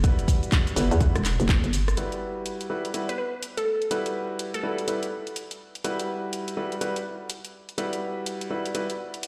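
A bouncy, swaggering bass house excerpt at 124 BPM with a swung 16th feel in E minor opens on an Emadd9 chord, with clear concert grand piano stabs pumping through a low-pass filter and dub echo, a hollow, knocking FM bass with tube saturation, a punchy up-front kick, and a garage kit of handclaps, hats, rim click and shaker. The kick drops away at 1.6 seconds and the bass at 2.0 seconds, when a filter sweep begins sweeping the intimate, polished piano while the kit carries on. A glassy, detuned wavetable pluck with chorus and cassette tape grit briefly appears at 3.1 seconds, all set in a lush hall reverb and the echo of a stone room heard over a big sound system.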